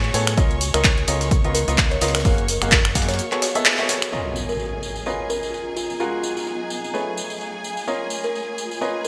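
A brilliant baby grand piano riff with delay and sidechain pumping leads this joyful, uplifting piano house excerpt at 128 BPM in Db major, over lush, bowed symphonic strings and a cloudy, evolving granular pad that both pump, a round dub bass that stops at 3.2 seconds, a tape-warm punchy electronic kick, a punchy analog drum machine of snaps, handclaps, hi-hat and shaker with gated reverb, a very quiet, gritty breakbeat kit and a saturated tambourine, while a woody kalimba melody with delay sits in the background and an electronic impact arrives at 4.1 seconds as the drums drop out, all framed by a lush hall reverb and bright 1980s-style digital production.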